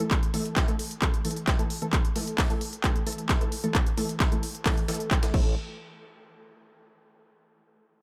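A dry, close-sounding mix opens this cut from a longer, intense and hypnotic peak-time techno track at 132 BPM, where a thick, detuned, wave-folded rave stab, bright with chorus, built-in reverb, digital delay and sidechain pumping, hammers an A5 chord over a punchy, tape-warm electronic kick up front, a layered techno kit of crash, handclaps and smooth pumping hats, and a pitched-up, compressed breakbeat kit with a high-tuned, filtered snare tucked in the background, before a gritty, nasal, distorted sawtooth bass drops in on A1 at 5.3 s just as the harmony falls away at 5.6 s.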